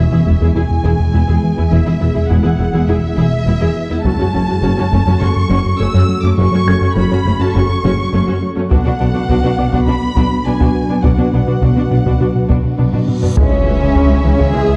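Brooding and vast, this cinematic film-score excerpt blends orchestra and electronics at 103 BPM in a straight 4/4, moving through E, F#m and Bm before landing on C#m at 13.4 seconds. A lush violin section carries the melody with soft-attack vibrato over a rich, intense viola accompaniment, while a woody cello section and a clear, distant double bass section sit in the background beneath a smooth, mellow synth bass riff. An ethereal, airy pad holds sustained chords with ensemble chorus and built-in reverb, a round analog pluck runs very quiet arpeggios with a filter sweep, and a dark grand piano adds high, delayed texture far back in the mix. Dry, hard-stick taiko hits arrive briefly near the start and around 4.0 seconds, then return from 8.7 seconds, with a drum fill leading into a huge, bright reverse cymbal and impact. At 13.4 seconds the arrangement broadens as a second violin line, bright trombones, roomy French horns and a deep, rumbling detuned saw bass join for the final chord. 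The whole production is dark and warm, set in a wet scoring-stage reverb.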